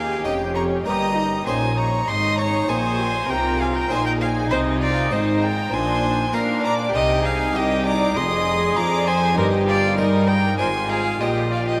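A classical, baroque-style concerto movement with solo episodes, this brilliant, lively cut from a longer piece moves at 98 BPM in a straight 4/4, starting in Ab major and settling into Eb major from 4.5 s. A solo violin sits up front with the melody, its gut-string tone rich and reedy with light vibrato, while a chamber violin section also carries the melody, higher and softer in the background. A second violin section carries a second line with a smooth top, and a viola section fills in the accompaniment with a close, period-style sound. Cellos and double basses anchor the bass in bowed, reedy period style, and a very quiet Italian-style harpsichord adds airy, bright plucked accompaniment from a single set of strings. Everything sits in a vast, echoing cathedral space with a long, wet reverb, as the harmony moves through chords such as Cm, Fm7 and Eb/G before closing on Bb7.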